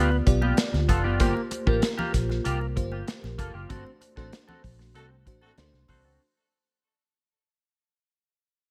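An up-front modern studio drum kit drives this slick, bittersweet 1980s jazz-funk pop excerpt, its tight kick, smooth medium-tuned snare and hi-hat bathed in gated reverb. A round, punchy foam-muted fingered bass and very quiet, close, dry high-tuned congas sit beneath a sparkling, bell-like FM electric piano with subtle chorus and a bright, clean semi-hollow guitar riff through analog chorus, moving from G7 through C7sus4/G to D7/G. The band hits an accent from 3.7 seconds as the whole passage fades, and a faint, loose horn section with vibrato and delay slips in at 5.0 seconds within a small room ambience.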